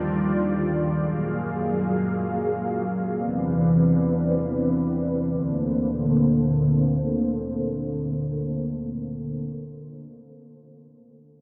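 Soaked in a huge, dreamy reverb, this brief, soulful amapiano excerpt in free time and Bb major rests on an up-front, dark and vintage string-machine cello patch with a sawtooth edge and a sub octave, whose sustained chords from D3 to F5 are coloured by phaser, ensemble chorus and a low-pass filter that sweeps through the first 5.3 seconds, as the harmony moves from Ebmaj9 through Gbmaj9 and Cmaj9 to arrive on Bbmaj9.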